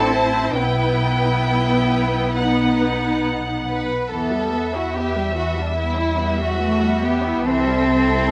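A moderate large-studio reverb gives a spacious glow to this short passage, cut from a longer piece, in which a chamber string orchestra plays a solemn, melancholic slow romantic movement in E minor, moving with rubato at about 65-73 BPM in 4/4. Bowed violins carry a focused, vibrato-rich melody above a second violin line, while violas add expressive accompaniment and a smooth, even cello section sits in the background over soft-attacked double basses. The harmony passes from Am through Em/B and B to Em, then turns to C at 7.5 seconds.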